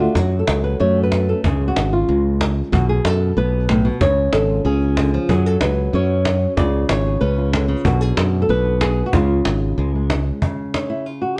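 A dark, boxy, thumb-plucked flamenco guitar leads this passionate, dramatic flamenco excerpt in C# phrygian dominant at a brisk 187 BPM, its finger squeaks audible up front as it moves through chords that keep returning to C#. A bright, growly fingered electric bass sits just as close with a punchy, direct tone until it drops out at 10.3 seconds, while a woody, compressed cajon with faint snares and soft hands enters at 0.2 seconds. Light reverb and a dark production keep the trio intimate.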